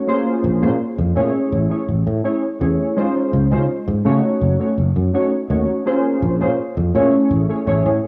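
Nostalgic and dreamy, this short vaporwave fragment drifts at 83 BPM in a straight 4/4, tuned slightly flat to A4 = 439 Hz. Warbly lo-fi synth keys carry the accompaniment from the very start, their detuned pulse and sawtooth tones striking quickly and then decaying, thickened by analog chorus and analog delay into a dark, full-bodied haze. A sustaining fretless electric bass joins at 0.4 s, sitting up front with a bright, growly, punchy, amped edge. The harmony wanders through rich, slightly unsettled colours: Bbm9, Amaj7, Dbmaj9 and Gbm6, before circling back to Bbm9 and Amaj7. A wet recital hall reverb blends with cassette tape grit and a small room ambience, lending the whole passage the faded feel of a half-remembered tape.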